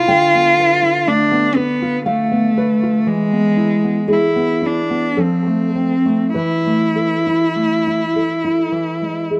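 Recorded outdoors with a dry, open sound, this short passage cut from a longer piece sets a cello and a nylon-string guitar up front, each carrying a slapback echo. It is a romantic duo in a slow, rubato 3/4, moving at roughly 50-61 BPM, with an elegiac, yearning mood. The bowed cello sings the melody with a rich, focused tone, a smooth top and vibrato, staying in its tenor register. Beneath it the guitar accompanies with dark, woody, full-bodied thumb-plucked notes from old strings, giving a deep classical character. The harmony drifts from Bm7b5/D to E, then to F at 5.2 seconds and Esus4 at 6.4 seconds, before settling back onto E at 8.7 seconds.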